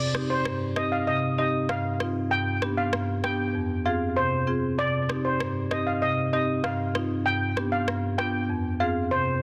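Dancehall at 97 BPM in C harmonic minor, this bouncy, tough fragment cut from a longer piece sets a woody, dark marimba accompaniment up front from the start, joined at 0.1 seconds by a tape-warm electronic rim click with soft clipping on the snare and at 0.3 seconds by a shimmering, vintage steel pan lead carrying tape echo, all over a Cm, G and Fm progression in light reverb and a dense, heavily limited modern master.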